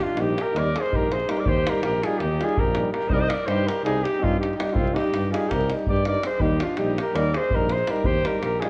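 An up-front flugelhorn carries the melody in this restless, bittersweet Balkan brass band excerpt, its warm, roomy tone set slightly at a distance in a classical style. Beneath it, an alto saxophone adds a smooth-topped second line with vibrato, while a clear euphonium sits in the background playing a single accompanying note with light vibrato. A close-miked tuba anchors the bass, and a very quiet trombone with a vintage colour adds one more accompanying tone. A deep acoustic davul, heard in a small room, marks the 9/8 metre with a straight feel, and the harmony moves to C minor at 3.1 seconds before returning home at 6.4 seconds. The whole fragment, cut from a longer piece, sits in a moderate concert-hall reverb and carries the worn, warbling pitch drift of old cassette tape.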